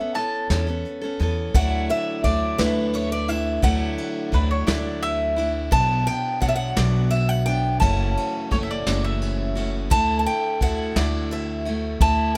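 A dry recording of pastoral acoustic folk in 6/8, where a picked mandolin opens briefly before a boxy archtop guitar takes the melody at 1.6 s, backed by a picked steel-string guitar, a woody, up-front pizzicato upright bass and a small-room brush kit with dark cymbals, while the mandolin's double strings return as a second line at 4.3 s.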